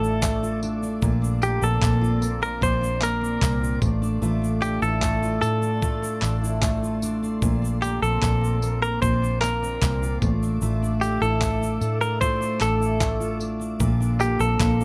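Over a grainy tube shaker and a dark, round, foam-muted electric bass sitting up front, a steady, straight 4/4 groove from a gritty, sampler-style soul drum kit enters at 0.2 s, with a thumpy kick, handclaps and tambourine. This carefree, easy-going acoustic pop excerpt alternates between Dmadd9/A and Bbadd9, with a full-bodied jumbo steel-string acoustic guitar picking the accompaniment. A twangy, clean electric guitar recorded direct carries the melody, while a glassy, ethereal FM pad with ensemble chorus and built-in reverb warbles mellowly in the background.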